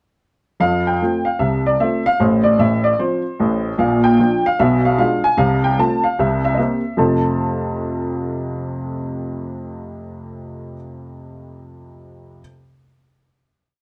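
Exuberant and playful, this short stride piano piece in F major swings briskly at 150 BPM, with a lone upright piano carrying a single-line melody over a stride bass from 0.6 seconds. The piano sounds woody, worn and slightly detuned, sitting up front with long sustain in a moderate club reverb, all inside a dark production. A brief run of changes through Bb and a diminished chord to C7 settles onto a final F chord at 7.0 seconds, which holds until 10.2 seconds, and the piano ends at 12.4 seconds.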